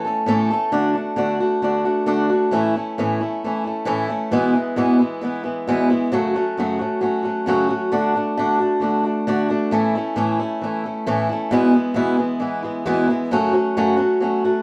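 Warm and open-road in mood, this rock excerpt moves at 133 BPM in A major, with a lone picked acoustic guitar playing throughout in a swing style, sitting up front with a boxy tone and audible finger squeaks. The guitar cycles through A, D, E and F#m from the start to 14.6 seconds, spanning from its low E2 to A4. A moderate studio ambience gives the sound a live, in-the-room feel.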